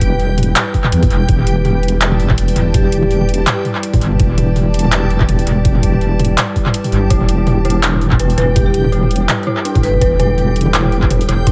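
An echo-heavy, lightly reverberant mix frames this cinematic, spacious half-time drum and bass excerpt in E minor at 165 BPM, where a deep, detuned wobble bass and a moody, sidechain-pumped analog pad sit beneath an overdriven drum kit with bright hats, handclaps and toms, a gritty, pitched-down electronic kick that drops out at 6.7 seconds, and a dreamy reversed swelling texture, while a metallic vibraphone rings faintly in the background and an eerie, inharmonic FM synth bell plays arpeggios from 7.1 seconds.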